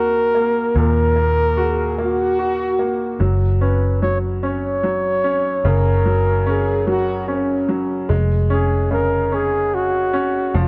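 This heartfelt, romantic pop ballad in 6/8 opens with a breathy flugelhorn carrying the melody over a clear, woody upright piano and a round, punchy muted electric bass, moving slowly at 49 BPM in F# major from D#m to F# and then C#/E#. The whispered, jazz-style flugelhorn, touched with digital delay and vibrato, scoops gently into its notes, while a mellow French horn section adds a second line between 1.6 and 8.3 seconds. The whole passage, cut from a longer piece, sits in a small room with light reverb and carries the worn, warbling pitch drift of old cassette tape.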